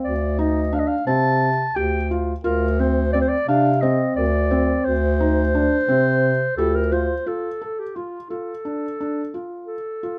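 Set in an uneven 7/8 at 174 eighth-note beats per minute with a straight feel, this contemporary chamber piece moves with an urgent, hypnotic pull. A dark, distant clarinet carries the melody in a classical style, while a felt-muted upright piano spins soft arpeggios, its mellow tone edged with audible action noise. Beneath them, a breathy bass clarinet holds the bass line up front with jazz-style vibrato and a punchy attack. A very quiet celesta adds delicate, bell-like shimmer to the texture. The harmony rests on Fsus4/D before shifting to D minor at 7.3 seconds, as the bass clarinet falls away at 7.2 seconds and the celesta at 7.6 seconds, leaving clarinet and piano to carry the final stretch. Close, detailed microphones and a light reverb give the recording an intimate sense of presence in this short cut from a longer work.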